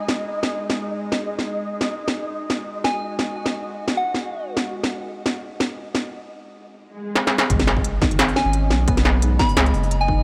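Tense and heavy, this half-time drum and bass excerpt at 174 BPM in G# minor opens on a string-like drone with gritty 12-bit sampler character and sidechain pumping, a flickering granular texture, and an industrial kit of clanging snare and crisp hats re-recorded in a large room. Soft FM synth bell phrases with chorus, phaser and delay enter at 2.8 seconds. A background swell at 7.0 seconds and a drum fill at 7.2 seconds lead into a drop at 7.5 seconds, where a heavy electronic kick, a thick saturated sub bass and dark, felt-muted upright piano arpeggios with audible action noise join in.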